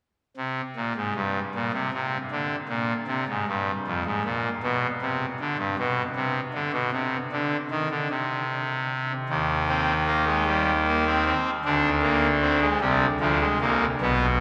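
Bathed in a cavernous cathedral reverb that rings for about 6.3 seconds, a solemn yet driving baroque-style four-part fugue in C minor unfolds at 51 beats per minute in 12/8, played solo on a pipe organ's trumpet stop whose brassy, bright, up-front voicing carries a crisp chiff from 0.4 seconds. It spans B1 to D4 and moves onto C minor over E-flat at 9.3 seconds and a D7 flat-five at 11.7 seconds in this fragment of a longer piece.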